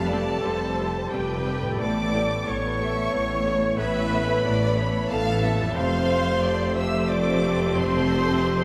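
A sorrowful, bittersweet film-score passage opens with nearly the full orchestra sounding together, moving at 91 BPM in a rubato 3/4, cut from a longer piece. A focused, distant violin section carries the melody high above. A lush second violin section traces a second line, joined by an airy flute ensemble and a solo clarinet tracing their own second lines in the background. A brilliant grand piano plays very quiet accompaniment, joined at 0.1 s by a viola section with expressive portamento, while a dark French horn section holds tight sustained chords and a ringing concert harp adds faint fingerpicked arpeggios. Smooth, even cello and double bass sections anchor the low end with bowed vibrato as the harmony shifts from Fadd9 to Aadd9 at 1.8 s and returns to Fadd9 at 5.8 s, the whole orchestra steeped in the long wash of a vast, echoing cathedral.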